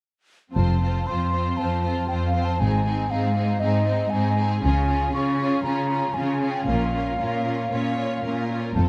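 Up-front bowed double basses with a focused vibrato anchor this soaring, heroic adventure-score excerpt alongside lush, smooth cellos, background violas, distant, intense violins carrying the melody and a second line, and a close-miked, hollow, mellow silver flute floating above, all moving through F, Ab, Db and Bbm in a dark production with scoring-stage reverb.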